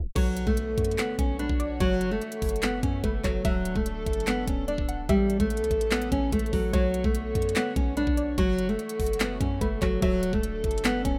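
Brooding and menacing, this half-time trap hip hop excerpt in B minor at 146 BPM opens on a reverse cymbal, tape stop and very quiet electronic impact beneath an up-front fingerpicked classical nylon-string guitar melody and a deep sine 808-style bass in the background. A knocking trap kit with crisp hats, handclaps and crash then joins, along with gut-toned bowed strings holding sustained chords and a warbling, detuned lo-fi pluck treated with chorus and tape echo, all in a rough home-demo mix with digital ambience.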